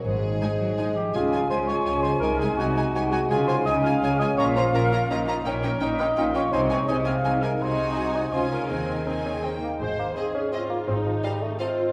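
A soft-mallet vibraphone carries the melody in the background, ringing over thumb-plucked concert harp arpeggios and a smooth bowed double bass section, with cello, violin and viola sections joining almost at once in this magical, whimsical film cue in a lilting three-four. A lush violin section sings the upper melody with expressive vibrato, while a very quiet, focused second violin line and a distant viola section with portamento fill in beneath, and a mellow cor anglais, airy silver flute, roomy clarinet and vintage-toned bassoon add playful woodwind lines from about 1.1 seconds. The winds and vibraphone fall away near 9.5 seconds, leaving harp, strings and bassoon to ring on in a wet concert hall reverb.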